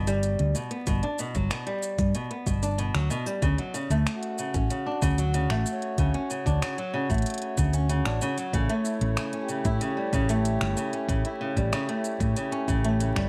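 A round, dark hollow-body electric bass sits up front in this warm, delicate folktronica excerpt at 94 BPM in D major, joined by fingerpicked flamenco guitar arpeggios through digital delay, an overdriven organic electronic kit of finger snaps, smooth hi-hat and shaker, a soft overdriven electronic kick from 0.9 seconds, and a reedy, breathing pedal harmonium holding sustained chords with vintage 12-bit sampler grit from 4.2 seconds, all set in light reverb and vinyl crackle as the harmony moves from G to Dmaj7 to A7.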